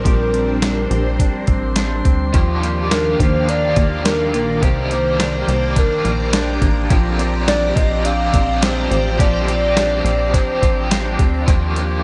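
Lightly reverberant digital ambience and a soft top end frame this dreamy, blissful dream pop excerpt in Bb major, moving at 105 BPM in a straight 4/4 over lush ninth chords. A warbling, detuned lead with vibrato carries the melody over a swirling vintage string machine with phaser, fingered arpeggios on a clean, compressed semi-hollow guitar, a punchy, funky analog bass with a filter pluck, and an up-front, sampler-style drum machine with a thumpy kick and tape warmth. A very quiet, glassy texture of drifting overtones appears at 1.4 seconds, and a bright, overdriven electric guitar with tremolo joins at 2.3 seconds.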